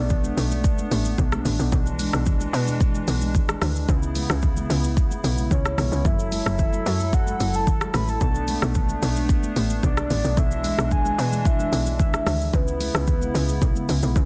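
A dense, heavily limited modern master with a digital ambience carries this hypnotic, soulful amapiano excerpt, where a tight, punchy FM log drum bass and an up-front deep house kit with a deep kick, dark hats, rim click and shaker drive beneath a hollow, flute-like pad pumping through chorus, very quiet congas add a thick-skinned acoustic touch with soft hands, and a round, dark octave-layered synth lead with vibrato, phaser and digital delay sounds briefly at 0.0 seconds before returning at 5.5 seconds to carry the melody.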